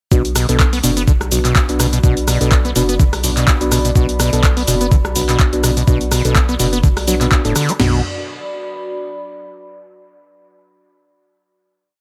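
A squelchy, gritty acid bass riff with accents and slides, overdriven and soaked in lush chorus and dub echo, drives this trippy acid house piece in B minor at 125 BPM, backed by a thumpy four-on-the-floor kick, snare, toms and crash from an up-front 12-bit drum machine alongside tape-warm analog handclaps, hi-hats, cabasa and rim clicks. A round sine sub bass pumps against the kick in a dotted rhythm, while nasal, full-bodied chord stabs move one shape in parallel through chorus and echo. A deep, moody pad with detuned, wave-folded layers rises from 1.3 seconds and rings on through the final chord from 7.8 to 9.7 seconds.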